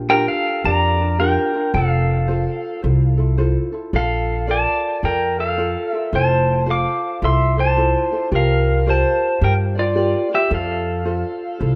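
Dreamy and languid, this short Hawaiian passage, cut from a longer piece, drifts along in a relaxed swing in four. An electric pedal steel guitar carries the melody from 0.1 seconds, played with fingerpicks, slide and volume swells; its bright, clean and twangy tone is compressed, touched with tape echo and sits up front. Beneath it, an upright bass played pizzicato on gut strings gives a woody, dark and thumpy foundation, also placed up front. A light acoustic ukulele, fingerpicked with a warm tone, fills in the accompaniment quietly. The harmony glides through Bb6, Fmaj7, Bbmaj7 and C9sus4 before settling on F, all bathed in a moderate plate reverb with the rough feel of a home demo mix.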